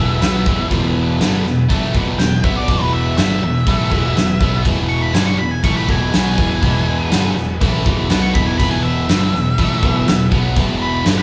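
An octave-fuzz lead guitar solo opens this driving, raunchy blues rock and southern rock excerpt, its dark, distorted tone carrying the melody high above a double-tracked electric guitar that hammers out an overdriven, picked riff up front. Beneath them, a picked electric bass with warm fuzz sits in the background. An overdriven tonewheel organ holds thick, gritty sustained chords through a rotary speaker, very quiet in the mix. A huge arena drum kit enters at 0.2 seconds with a boomy kick, a medium-tuned snare and bright crash cymbals, pushing a straight 4/4 feel from the front of the mix. The whole power trio sound comes across as a band playing live in one room, with a natural, big-room character and a moderate large studio reverb.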